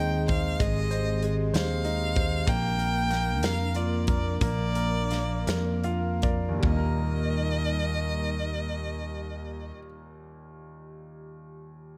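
A rich, focused violin sings the melody with vibrato in this tender, heartfelt six-eight pop ballad in Eb major, moving at 49-64 BPM over a clear, intimate concert grand piano with audible action noise, a dark, round fretless electric bass with analog chorus, and an airy, breathy pad holding soft chords in the background. A punchy studio drum kit of hi-hat, kick, snare and toms plays through the first half as the tempo slows from 2.5 s into a grand piano fill that leads to the move to Eb at 6.6 s. From 9.7 s the piano carries on alone in a small room with light reverb.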